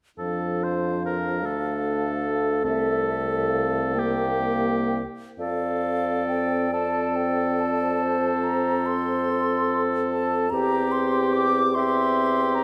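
Classical slow romantic movement for wind quintet in a tender, rubato 12/8, where a pure, close-miked silver flute with soft attack and vibrato carries the melody over a warm, up-front oboe second line, a clear, vintage-toned clarinet and a mellow French horn in accompaniment, and a bassoon bass with light vibrato, the five playing together from 0.2 s to 12.6 s in a wet scoring-stage reverb as the harmony moves from F to C7, back to F, and on to C/E.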